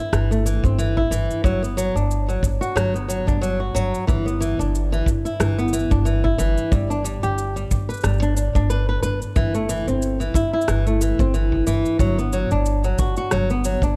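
An up-front flamenco guitar opens this 14-second folktronica excerpt, fingerpicking arpeggios through a digital delay over a pedal G as the chords move from A7(no3)/G through Em7/G, G and Am7/G, joined at once by a woody, thumpy pizzicato upright bass on G1, a tape-tinged electronic rim click and shaker, and, from 0.6 s, a punchy acoustic kick with a rolled-off top and pumping room sound, all at a hopeful, pastoral 91 BPM with a light swing in a dark production with small-room ambience.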